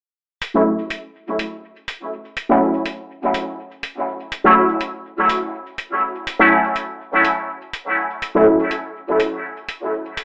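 Deep and cavernous, this dub techno excerpt moves at 123 BPM in a straight 4/4, settled in F# minor on a single F#m7 chord. A resonant polysynth plays stabs between F#3 and E4, its juicy, detuned blend of square and sawtooth waves shaped by a filter sweep that runs from 0.2 to 10.2 seconds. Its fast attack and sustained tails sit up front, colored by chorus, phaser and dub echo, and the stabs stop at 8.4 seconds. Beneath it, a layered electronic hi-hat with metallic, overdriven hats enters at 0.4 seconds and sits far lower in the mix, touched with studio reverb. The whole recording is wrapped in a wet digital room reverb and a telephone-like sound, and it is clearly cut from a longer piece.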